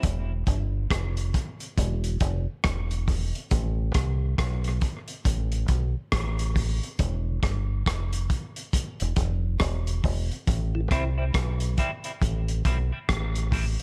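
A round, punchy fingered electric bass sits up front beside a gritty, saturated breakbeat kit of hi-hat, tight kick and rim click in this spacious, hypnotic dub reggae excerpt at 69 BPM in A minor with a swung sixteenth feel, before a mellow tonewheel organ with key click, slow rotary speaker and tape echo appears in the background at 10.8 s and a clean, hollow-bodied semi-hollow electric guitar with subtle chorus and tape echo plays from 10.9 to 13.6 s, over a dry, lossy-sounding mix.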